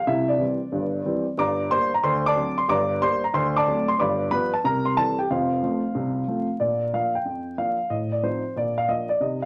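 Stride jazz at a swinging 184 BPM in Bb major, this exuberant, playful excerpt features a solo baby grand piano that sounds dark, mellow and worn, with long sustain, placed up front in a wet studio reverb over a bed of vinyl crackle, moving into a new section at 6.6 seconds.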